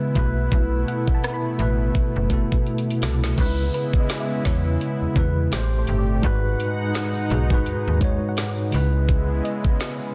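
A swung sixteenth-note feel in 4/4 drives this sensual, moody contemporary R&B excerpt, where an up-front electronic drum kit with a knocking kick, woody snare, metallic hats, rim clicks and crash enters at 0.2 s and plays a fill from 2.7 to 3.4 s, a snappy FM bass with a metallic attack holds the low end, a worn, slightly out-of-tune tine electric piano heard through its built-in speakers carries the mellow accompaniment, a detuned sawtooth analog pad warbles with chorus beneath, and a soft, dark wave-folded pluck with chorus and delay sits in the background from 0.9 s, the whole mix set in digital ambience and a dense, heavily limited modern master.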